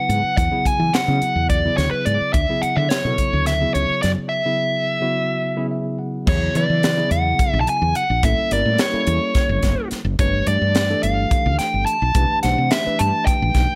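Funky and bright, this electric jazz fusion passage in 7/8 pairs a dark, smooth, overdriven lead guitar carrying the melody up front, touched with slapback echo, against a worn, slightly out-of-tune tine electric piano heard through its built-in speakers, lightly overdriven. A woody, round fretless electric bass and a crisp, polished drum kit with a high-tuned snare and punchy kick drive the straight feel through chords such as E13, Dmaj9 and A7b9. A break arrives at 4.3 seconds, with an electric piano fill at 5.4 seconds leading into a new section at 6.3 seconds, all in a light reverb, cut from a longer piece.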